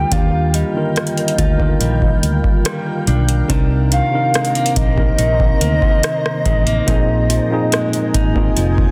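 A hollow, woody clarinet-like synth lead with chorus and tape echo carries a dreamy, smooth contemporary R&B melody at 71 BPM in Eb major, over a worn, slightly out-of-tune tine electric piano, a blurred granular cloud pad, clean picked arpeggios from a direct-recorded electric guitar with spring reverb, and a round, foam-muted fingered bass, joined at 0.1 seconds by a booming analog drum machine with a deep kick, metallic hi-hats and rim clicks, all moving through Ebmaj9, Cm9 and Bb7sus4 in a dense, heavily limited, dry modern mix.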